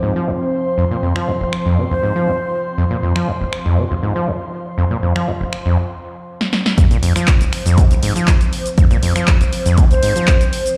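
Acid house at 120 BPM in a trippy, raw mood, this short cut opens on a squelchy, gritty acid bass riff with dub echo, a warbling lo-fi pad holding sustained F5 chords with chorus and sidechain pumping, and a breathy pad adding texture until 5.8 s. A punchy analog drum machine with overdriven snare, handclaps, finger snaps, hi-hat and cabasa enters at 1.2 s, and a pure, vibrato-tinged silver flute echoes a brief note on C5 before and after the break. After a drum fill, the drop at 6.8 s brings in an overdriven, up-front electronic kick, all heard through spring reverb and the stony reflections of a big sound system in a bare room.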